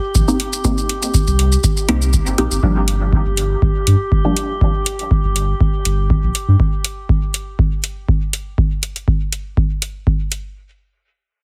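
Dub techno at 121 BPM in G minor, hypnotic and hazy, this fragment of a longer piece opens on a Cm7 chord with a muted, detuned sawtooth chord stab carrying phaser, dub echo and sidechain pumping, over a round sine sub bass and a glassy, drifting texture of chorused overtones that also pump. A filter sweep on the stab begins as the harmony moves to Gm7 at 2.6 seconds. The stab stops at 4.3 seconds and the bass and glassy texture at 6.6 seconds, leaving the deep analog kick and metallic shaker and hi-hats up front in a light digital ambience with a heavily compressed, radio-like sound.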